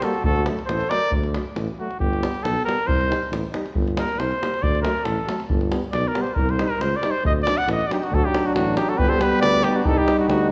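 A straight 2/4 pulse at 138 BPM drives this bittersweet, fiery Balkan brass band fragment, with a tight, compressed davul up front and a mellow, distant tuba carrying the bass through transformer saturation. A punchy trumpet with a smooth top leads the melody and takes a solo through the middle, while euphonium and trombone, both with light vibrato, sit back as accompaniment, and a roomy flugelhorn adds a second line that drops out at 1.1 seconds and returns at 7.9. The band rings in a wet scoring-stage reverb and carries the worn, warbling pitch drift of old cassette tape.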